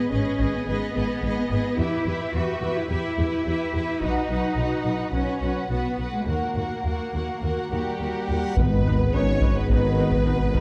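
A straight 4/4 pulse at 107 BPM drives this relentless, dramatic cinematic orchestral cue in G# minor, where intense, distant violins carry the melody over a lush second violin line, focused violas and smooth cellos, with up-front double basses anchoring the low end and close, dry taiko hits from heavy sticks punctuating the cue, until a warm French horn section enters at 7.7 seconds and a huge, dark reverse cymbal and sub drop lead into an impact at 8.6 seconds, where very quiet mellow trombones, a background string section, a very quiet tuba and articulate hard-mallet timpani join, the excerpt set in a concert hall reverb.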